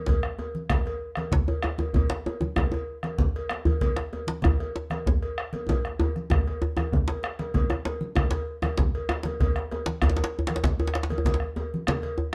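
A deep, saturated bombo sits up front in this West African drum ensemble. Its compressed low end anchors a powerful, driving groove in 12/8 at 129 BPM, counted in dotted quarters with a straight feel. Beside it, a medium-tuned djembe, close and dry and struck with hard hands, is equally prominent, while a second djembe, deep and warm, sits in the background with a small-room sound. Warm, low-tuned congas with a thick skin add body to the ensemble, and a metallic cowbell rings through with a live-room quality. All five parts play together from the opening moments to about 12 seconds in this passage cut from a longer piece, and a drum fill from 5.7 to 7.5 seconds leads into a new section. The production is dark, with moderate studio reverb giving the ensemble some space.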